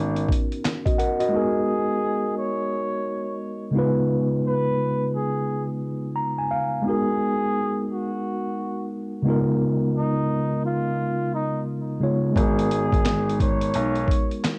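A bucket-muted trumpet carries the melody from 1.3 seconds, its breathy, veiled tone shaded with light vibrato, scooped notes and soft attacks, and softened further by a low-pass filter, cassette tape and analog delay so it sounds whispered and intimate in a jazz style. This reflective, melancholic lo-fi hip hop fragment, cut from a longer piece, moves at 87 BPM in 4/4 with a swung sixteenth feel, set in G# dorian over chords that drift between G#m7, C#9 and C#13. A clean, mellow tine electric piano plays the accompaniment throughout behind a cassette haze and low-pass filter, adding a brief fill at 5.8 seconds. A gritty, compressed sampler-style drum kit with a thumpy kick, fat snare, hi-hat and handclaps frames the trumpet passage, falling away as the melody enters and returning at 12.4 seconds, when a dark, smooth baby grand also comes back with long-sustained low bass notes. The whole sits in a moderate studio reverb with the dusty character of a home cassette recording.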